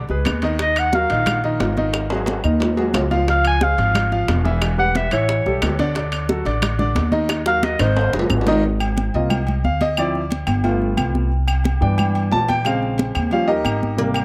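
Sunny and danceable, this short Afro-Cuban jazz excerpt moves at a brisk 179 BPM in straight 4/4. A punchy, vintage-toned clarinet with light vibrato and analog delay carries the melody as a forceful solo until 8.1 seconds, then the clear, up-front baby grand piano takes its own solo over a dark, woody pizzicato upright bass. Damped, high-tuned congas, tight bongos and cowbell, woody claves and ringing, distant timbales and agogo bells fill out the rhythm, with drum fills around 1.9 and 7.3 seconds, all in a light, small-room ambience.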